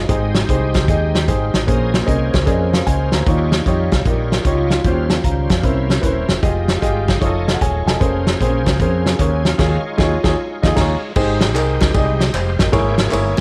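An up-front grand piano with intimate, audible action noise provides accompaniment in this excerpt of uptempo gospel, swinging at 152 BPM in Ab major with a hopeful, reverent mood. A small-room acoustic drum kit with a fat snare and punchy kick drives the groove on crash, ride, hi-hat, kick and snare, while a dark, round fretless electric bass anchors the low end. Behind them, a bright, shouting tonewheel organ holds sustained chords through a slow rotary speaker with light overdrive and chorus vibrato, and a very quiet French horn section adds soft, classical-style sustained chords until 11.2 seconds. The harmony moves through rich extended chords such as Bbm9, Eb13 and C7b9, with a piano fill at 7.2 seconds and a full-band accent on Eb9sus4 before returning to Abmaj7. At 11.2 seconds a vintage, band-limited blend of egg shaker, tambourine and group handclaps enters in the background, all set in light reverb.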